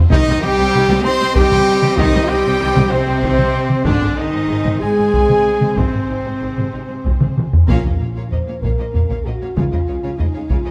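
A taiko ensemble struck with hard sticks drives this relentless, dramatic cinematic orchestral cue at 64 BPM in 6/8, with the up-front drums pounding beneath lush bowed strings, a mellow French horn section holding sustained chords and a bright, roomy solo trumpet firing stabs over a Cm to G# progression. A very quiet, distant violin melody and a focused second violin line float above the viola accompaniment, cello and double bass, while a hollow silver flute traces a second line in the background until 7.4 s. A drum fill at 7.2 s leads into a full-band accent at 7.7 s, where articulate, dry timpani strike and the music turns to Bb minor, moving to Db in the moderately reverberant scoring-stage space of this excerpt cut from a longer piece.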